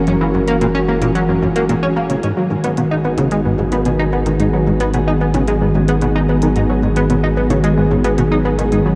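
Expansive and cosmic, this ambient, sequencer-driven space music moves at 111 BPM in a straight 4/4, set in G# minor and cut from a longer piece. A sweeping, resonant pad built from detuned sawtooth tones holds sustained chords with a slow attack and long release, its chorus giving it an evolving shimmer as the harmony shifts from F#7 to G#m7 at 2.2 seconds. Up front, a punchy, funky analog bass riff with a wave-folded, ring-modulated bite and a fast filter pluck enters at 0.1 seconds, dressed in lush chorus, tape echo and shimmer reverb. Beneath it a round, deep sub bass sustains, while a bright, fingerpicked Celtic harp rings out arpeggios in the background through its own tape echo and shimmer reverb. Clicky electronic hi-hats and percussion blips sit low with tape echo, and the whole mix is soaked in a huge ambient reverb with a dreamy, cassette-tape character.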